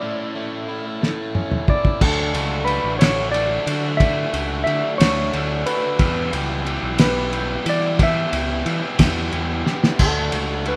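An upbeat, carefree indie rock excerpt in a straight 6/8, cut from a longer piece and heard as a rough home demo mix with studio reverb. A twangy, finger-played clean electric guitar carries the melody with analog delay, its opening solo over a brief break setting the tone as two overdriven guitars play riffs beneath it: one bright and compressed, the other biting and tucked in the background with subtle chorus and analog delay. A cloth-damped, thuddy acoustic kit arrives at 1.0 seconds with a fill, sitting up front with a fat snare, tight kick and dark, muffled cymbals across crash, ride, splash and toms, its lo-fi, gritty, rolled-off sound giving the track a small-room intimacy. At 2.0 seconds a growling picked electric bass joins, overdriven and direct, as the harmony moves from A through Dadd9 and Em to D. A second drum fill near the close keeps the easygoing momentum rolling forward.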